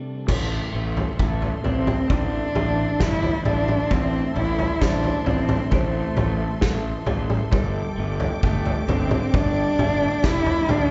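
A lush string section holds sustained chords in A minor while a bright, twangy clean electric guitar and a muted, felt-softened upright piano with audible action noise spin quiet arpeggios. At 0.3 s a round, fuzz-overdriven fingered bass and a loose, roomy indie drum kit with a punchy kick and dark cymbals arrive, and at 1.2 s a dark, expressive solo cello takes the melody up front with vibrato and portamento. This slow, cathartic and cinematic post-rock passage at 66 BPM moves from A minor to Gsus2 at 7.5 s, all bathed in a cavernous church reverb.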